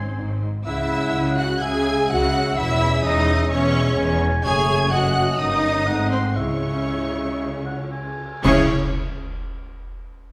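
Restless and stormy, this fast, rubato romantic orchestral passage in C# minor at 112-128 BPM sets a lush, vibrato-rich violin section singing the melody over a softer second violin line, a distant mellow oboe, a pure silver flute, focused violas, sustained French horn chords, a background cello section and a dark double bass section, while a cymbal swell, bright clash cymbals and concert bass drum enter at 4.5 seconds and crisp, very quiet timpani join the band accent at 8.4 seconds, all within a reverberant hall.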